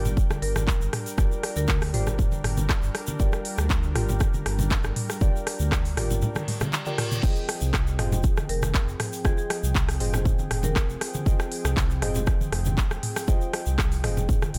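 Dry and close, this warm, hypnotic afro house excerpt at 119 BPM in F dorian rides a deep, rumbling detuned saw bass and a punchy, up-front electronic kick beneath a crisp-hatted afro-pop kit with crash, handclaps, rim clicks and toms, acoustic congas and a grainy, bright tube shaker, while a smooth, warbling analog pad and nasal, chorused chord stabs with digital delay breathe with sidechain pumping, a woody hard-mallet marimba with tape echo surfaces twice in the background, and a reverse cymbal at 6.4 seconds joins a drum fill into the shift from Gm7 to Fm9 at 7.2 seconds.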